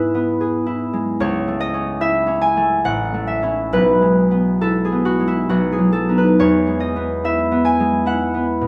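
A bright, ringing concert harp, fingerpicked and up front, carries this peaceful, graceful classical solo fragment in E major at a rubato 67-75 BPM in 3/4, spanning A1 to G#5 as it moves from E/G# through A/C#, A, E/B and B before settling on E at 6.4 seconds, all heard from further back in a wet stone room with a 0.9-second reverb.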